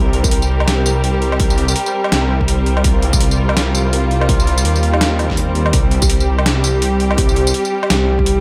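Half-time drum and bass in C minor at 166 BPM with a swung, heavy and spacious feel, built on a deep, rumbling detuned saw bass up front, a produced electronic kick re-recorded in a small room, and a gritty, pitched-down, overdriven boom bap sampler-style kit of snare, hi-hat, tambourine and woodblock, while veiled con sordino strings hold sustained chords under sidechain pumping, a pulsing gated texture with chorus sits in the background, and a woody kalimba with analog delay rings on G4 from 6.0 to 7.8 seconds, all bathed in a dreamy plate reverb.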